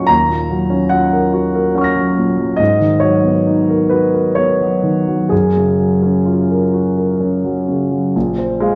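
A concert grand piano plays alone from the first moment, up front and open with a deep bass, in a luminous, dreamy impressionist classical passage in F# major and 3/4. Its rubato pulse drifts between 62 and 74 BPM through chords from F#maj7/D# to G#m11 at 2.6 seconds and F#maj9 at 5.3 seconds before a Bbsus2 at 8.1 seconds, set in a wet recital-hall reverb in this brief fragment cut from a longer piece.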